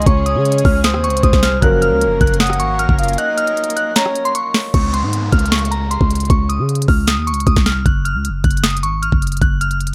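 A half-time trap groove at 154 BPM anchors this wistful, dreamy hip hop passage in Db major, cut from a longer piece, with an electronic drum kit up front pairing a knocking kick and sharp snare with crisp hi-hats, rim clicks and crash cymbals. A growling, buzzy 808-style bass with a fast, decaying attack sits equally forward, running the full length beneath a glassy, crystalline FM bell melody that is chorused and softened by a low-pass filter. For the first 4.3 seconds a breathy, flute-like synth lead with vibrato, chorus and tape echo carries a second line, while a felt-muted upright piano and a clear symphonic string section with light vibrato hold Dbmaj7 and Gbmaj7 chords in the background. After a break from 3.2 to 4.7 seconds, the piano, strings and lead drop away, and the second section moves through Db5 and Gb5 chords as an electronic downlifter sweeps in from 4.7 to 7.9 seconds. 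The sound is dry and gritty, with little reverb and a hardware-driven character.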